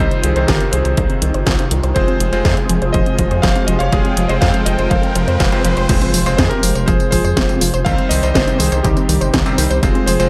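A punchy, overdriven electronic kick drives this bittersweet, danceable italo disco excerpt, joined by a layered house drum kit with a cracking snare, hi-hat, tambourine and crash, gritty and soaked in gated reverb, over a round, deep analog bass. A vintage electric grand piano with a clangy low end carries the melody through tape echo, while a lush, warbling unison pluck spins detuned arpeggios in the background and a smooth, chorused analog pad holds sustained chords beneath, with both the piano and the pluck filter-swept through the first 5.9 seconds. A bright, cutting second electric grand piano adds stabs over a Cm to Fm progression, and a very quiet riser lands on an impact at 5.9 seconds.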